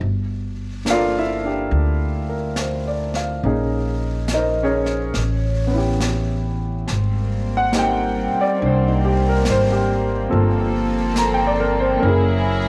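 Romantic and intimate, this slow swung jazz ballad at 70 BPM in 4/4 is cut from a longer piece, with a smooth, vintage grand piano up front carrying the rich extended chords and a woody pizzicato upright bass, touched with tube saturation, beneath it. A jazz kit played with brushes on snare and hi-hat sits softly in the background. At 6.9 seconds a bowed symphonic string section enters with soft-attack sul tasto chords that feel pure and floating, all in a light, small-room reverb.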